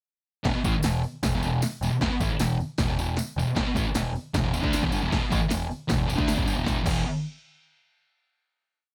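A double-tracked fuzz guitar and a punchy analog drum machine kick off a swaggering, rowdy garage rock stomp at 155 BPM at 0.4 s, the up-front power-chord riff doubled by a growling, overdriven picked bass in quarter notes while a jingly, close tambourine rattles along in a dry mix until a final chord rings out at 6.7 s.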